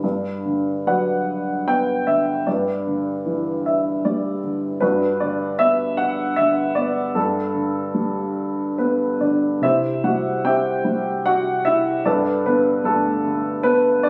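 A woody upright piano sits up front and plays alone from the first moment in this peaceful classical solo, lyrical and rubato in G major at 76 BPM in 3/4, ranging from G2 to G5. Gmaj7, Em7/G and Gadd9 harmonies carry a brief piano fill at 3.3 seconds, and a new section opens on a C chord at 9.6 seconds before returning to Gadd9. Recorded on a phone in the room with a light studio reverb, the sound is warm, and the clip is cut from a longer piece.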